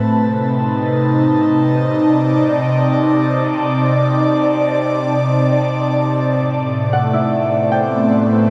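Ambient music in free time, melancholic and spacious, cut from a longer piece and set in a vast, echoing cathedral reverb. An airy, breathy pad sits up front, holding sustained chords that move from Cmadd9 to Am7 at 6.3 seconds. Its detuned sawtooth and noise layer are shaped by a slow attack and long release, with chorus, phaser and shimmer reverb. At 6.9 seconds a quieter Celtic harp enters with thumb-plucked, ringing acoustic arpeggios, also bathed in shimmer reverb.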